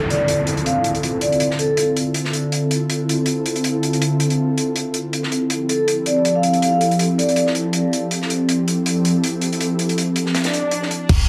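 An ethereal, detuned pad opens this frenetic, raw drum and bass excerpt at 161 BPM, holding sustained chords from Dm7 to Fmaj7 with ensemble chorus, built-in reverb and a vintage 12-bit sampler grit, while an electronic downlifter sinks beneath it. A crunchy breakbeat kit of hi-hat and snare, dark and saturated with a rolled-off top and high-pass filtering, drives the jungle groove with a light 16th-note swing. A metallic, ringing vibraphone played with medium mallets states a short melody at the start and again at 5.7 seconds, its notes trailing into dub echo in a boxy small room. A swell rises from 10.4 seconds into an impact at 11.1 seconds, where a deep, boomy 808-style bass and a compressed, pitched-up sampler kit of crash, thumpy kick and ride, mixed up front, land together. The dense, heavily limited master is coated in a plate reverb and vinyl crackle.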